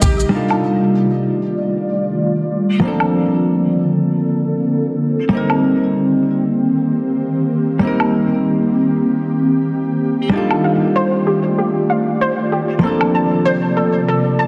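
A lightly swung sixteenth-note feel carries this blissful, smooth sunset chillout fragment, where tape-warm electronic shaker and woodblock percussion sit beneath an ethereal, detuned pad of sustained chords that moves through a filter sweep with chorus and phaser, a dark, clean hollow-body jazz guitar accompanies up front with delay, soft, round pluck arpeggios with echo return at 10.3 s, and the percussion drops out at 13.1 s, all of it bathed in a lush scoring-stage reverb and a dense, heavily limited modern master.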